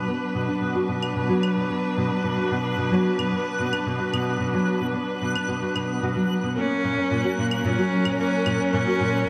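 Soaked in a lush hall reverb with a faint vinyl crackle, this dreamy, autumnal folktronica fragment feels intimate and close. Up front, a fingerpicked nylon-string guitar with audible finger squeak plays full-bodied arpeggios through chorus, delay and a filter sweep, while a bowed string quartet holds expressive chords with vibrato and portamento. High above, a reversed, detuned, granular texture swells bright and soft-edged, and electronic claves sit in the background from 1.0 to 8.6 seconds; at 6.6 seconds, as the harmony moves from Bm to F#, a rich, intense cello enters with a smooth-topped melody.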